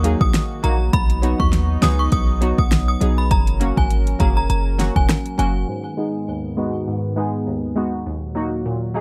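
A glassy, crystalline wavetable pluck opens this bouncy, hypnotic dancehall excerpt in G# minor at 101 BPM, together with a smooth sawtooth pad in the background, a deep, boomy 808-style bass and an up-front deep house drum kit with a punchy kick, fat snare, rim click and metallic hats roughened by overdrive. A chiming, inharmonic FM synth melody rings in high above at 0.2 seconds, its mellow tone thickened by ensemble chorus and trailed by delay, while the nasal, chorused pluck carries the accompaniment. The 4/4 groove has a light swing on the sixteenths, and the pad pumps against the beat under its chorus and low-pass filter. The chords move from D#m through B and F#. The drums and melody drop out at 5.5 seconds, and the sine-based bass stops at 5.7 seconds as the harmony settles on G#m. The closing stretch leaves the warm pad and pluck alone under a filter sweep, returning to D#m in a dry, close sound.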